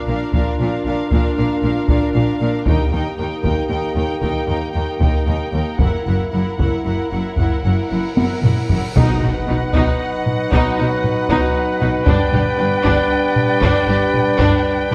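Lush, bowed violins carry the melody over a focused chamber violin second line, close violas, mellow distant horn chords, and rich cellos and double basses in the background, while heavy-stick taiko drums enter almost at once in this triumphant, majestic cinematic orchestral excerpt in 12/8; a huge, dark cymbal swell leads into an impact at 9.0 s, where clear woodwind chords, roomy trumpet stabs and a brief, very quiet hard-mallet timpani hit join, all set in a wet scoring-stage reverb.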